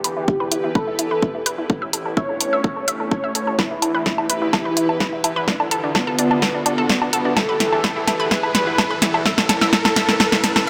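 A moderate digital room reverb casts a shadowy sheen over this melancholic, dramatic piece of melodic techno, cut from a longer track and built as a continuous build-up. Up front, a heavy, tape-colored electronic kick arrives at 0.3 s to join a layered kit of punchy snare, warm hi-hats and woodblock, with the hats and percussion pumping to the sidechain and a drum fill running from 3.6 s. Above a deep, rumbling detuned saw bass in the background, a morphing, warbling wavetable pad holds sustained chords while a round, nasal analog pluck spins filter-swept arpeggios with delay, a thick, bold unison lead with vibrato and tape echo carries the melody through its own filter sweep, and an electronic riser enters at 1.5 s.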